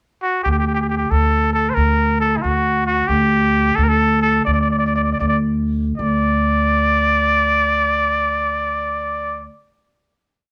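Heard through worn, warbling old cassette tape with light reverb and a drifting pitch, this complete, stately Persian modal piece in a straight 6/8 sets a nasal, bright trumpet with a straight mute up front, playing an ornamented jazz-inflected solo melody with vibrato and scooped notes in plate reverb, over a woody pizzicato upright bass holding simple root-and-fifth lines, slowing from 3.1 seconds until a held final note rings from 6.0 seconds.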